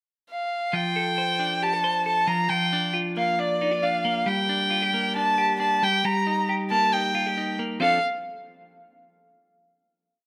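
A bowed violin, nasal and boxy with steady vibrato and a slapback echo, opens this bright, nostalgic indie pop piece at 0.3 s with hook-like motifs, joined at 0.7 s by a twangy, compressed twelve-string electric guitar playing a clean fingerpicked roll through a short verse before the final chord arrives at 7.8 s, captured in a rough home-demo mix with light reverb.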